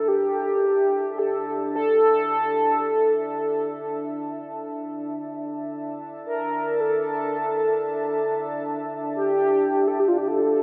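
Drenched in a cavernous cathedral reverb, this ominous, desolate ambient fragment at 53 BPM in 4/4 pairs a round, warbling horn-like synth lead, up front with analog chorus, delay and vibrato as it carries the melody, against a deep, moody, detuned pad that fades in over a Dsus2 chord across its 10.6 seconds, its evolving sustained tones thickened by chorus and a sub octave.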